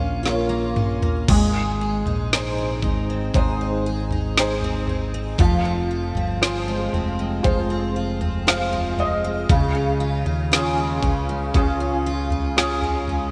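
Bathed in a lush hall reverb with a bright 1980s-style digital sheen, this hopeful, emotional pop ballad excerpt sets a soft, intimate felt-muted upright piano, touched with ensemble chorus and audible action noise up front, against analog-chorused arpeggios from a full-bodied jumbo steel-string acoustic guitar with finger squeak, a round, punchy fingered electric bass and a smooth R&B drum kit with a knocking kick and woody snare that opens with a fill, while the piano adds its own fill from 8.0 to 9.5 seconds.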